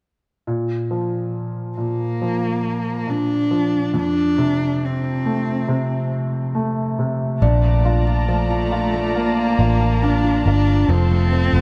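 In a dusky, intimate small-room sound with light reverb, this tender, emotional pop piece at 69 BPM opens on smooth, vintage baby grand piano at 0.5 seconds, a woody, sul tasto cello carries the bowed, vibrato-laden melody with tape echo from 1.8 seconds, and at 7.4 seconds veiled con sordino strings, a full-bodied fingerpicked steel-string acoustic guitar in the background and a round, punchy, foam-muted electric bass up front join over a Bbmaj7 chord.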